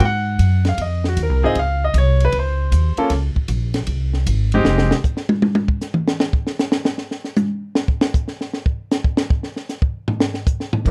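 Upright bass and a compact cocktail drum kit open this relaxed, swinging small-group jazz cut, with a clear baby grand piano joining almost at once. The plucked bass is woody and thumpy, while the piano plays over chords such as Dbmaj7, Bbm and Fm9, its long sustain and audible action noise giving it an intimate, natural feel. Around 4.9 seconds the bass and piano drop away, and the drums take a solo from 4.7 seconds onward, with a kit made up of crash, ride, hi-hat, snare, toms and kick. The kit sounds dark and smooth with a rolled-off top, a high-tuned snare and a punchy kick. Bass and piano return for only a brief moment at the very end of this fragment from a longer piece. The close, detailed miking and dry, small-room sound keep every part up front.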